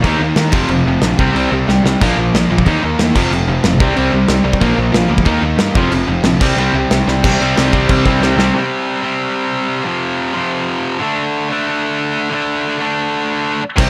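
Dry and upfront, this rowdy, energetic punk rock cut at 184 BPM pairs an up-front loose indie drum kit, with punchy kick, dark cymbals and fills around 1.7 seconds, against a fuzz-soaked overdriven picked bass and three bright picked guitars: a tight distorted one up front, plus a compressed overdriven one and a thick double-tracked fuzz one further back, all driving the riff until about 8.5 seconds, when the tight distorted guitar carries on alone before the full band crashes back in at 13.8 seconds.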